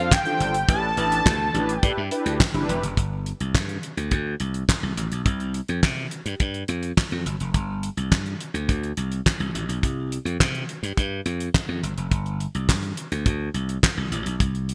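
This slick, funky early-eighties boogie funk excerpt opens with a fat, nasal analog lead carrying the melody through digital delay over mellow, brassy synth chords with chorus, both finishing by 2.8 seconds. A growly, punchy slap bass and a dry, damped 70s drum kit (fat snare, tight kick, hi-hat and handclaps) with gated reverb drive on at 105 BPM in straight 4/4, moving from G9sus4 and A9sus4 into an alternation of Gsus4 and Csus4. The bright digital production places bass and drums up front in a small, lightly reverberant room.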